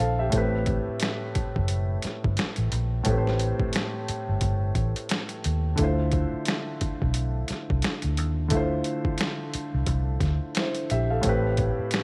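This is a short cut of R&B with a neo-soul lean, soulful and introspective, moving at an unhurried pace with a swung sixteenth-note feel. A baby grand piano carries the accompaniment from the very start, intimate and natural, with audible action noise and a long sustain, sitting up front. Beneath it, a vintage fingered electric bass gives a dark, round, amped, foam-muted tone to the low end until about 11.8 seconds. A sampler-style boom bap kit joins at 0.3 seconds, compressed, pitched down and made gritty by overdrive, with a thumpy kick, medium-tuned snare, hi-hat and finger snaps pushed forward in the mix. The harmony moves from Am9 to Dm9 and back to Am9, and a light reverb lends the room a modest sense of space.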